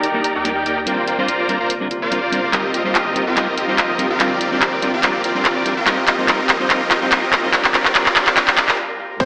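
Bittersweet and lush, this future bass build-up at 144 BPM in half-time sets huge, detuned supersaw chords with sidechain pumping and tape echo over a trap kit with bright hats and claps, a deep saturated sub bass in the background, a clean hollow-body electric guitar, ringing concert harp arpeggios and a very quiet ethereal pad, while a faint riser and impact enters at 1.3 s, a drum fill starts at 2.5 s, and a dark, boxy baby grand piano and a layered electronic kick arrive only at 9.2 s, the mix coloured by a wet digital room and an AM-radio tone.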